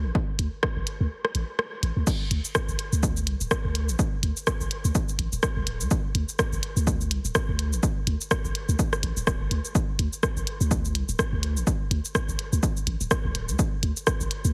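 A deep, punchy sine sub bass with a pitch-drop attack anchors this sparse, cool minimal techno excerpt at 125 BPM in 4/4, its sustained notes pumping under sidechain compression with a 57% swing on the 16ths. An up-front, layered electronic kick and a clicky, tape-warm minimal drum kit of hi-hat, rim click, shaker and crash cymbal sit in studio reverb. The kick drops out from 1.1 to 2.1 seconds before the drop lands at 2.1 seconds, all wrapped in light digital ambience and a heavily compressed, radio-like sound.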